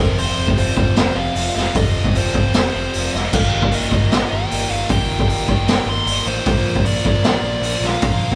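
A boomy, gritty garage drum kit sits up front in this aggressive, driving hard rock excerpt at 153 BPM, with a dark, overdriven lead guitar carrying the melody over a scooped high-gain guitar and a tight distorted guitar playing riffs in the background, a growling overdriven picked bass, and a very quiet, mellow sawtooth pad holding sustained chords through F5, Eb/G and Bb, all played live in one room with light reverb.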